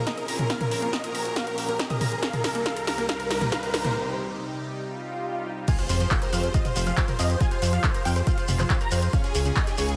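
Soaring and driving, this uplifting trance excerpt at 139 BPM in F minor builds over a punchy tape-warm kick, a drum-machine fill with pumping hats, claps and crash, a background riser and a lush phased supersaw pad under a huge, euphoric detuned supersaw lead with tape echo and a warbling vintage pluck arpeggio with dub echo, then breaks at 4.0 seconds before dropping at 5.7 seconds onto a grainy shekere and a fat, evolving detuned sawtooth bass, all set in a moderate concert-hall reverb.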